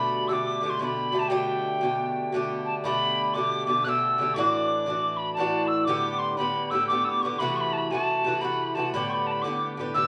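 Bright and lively, this fragment of a Celtic folk waltz moves at 118 BPM in a swung 3/4 in G major. A pure, distant tin whistle carries the melody with vibrato and a soft attack, while an up-front Irish bouzouki accompanies with mellow, metallic picked double strings, both playing throughout. The harmony rests mostly on Gadd9, passing through Dadd9 and an F#m7b5 at 7.4 seconds before returning home, all set in a wet studio reverb that places the listener further back in the room.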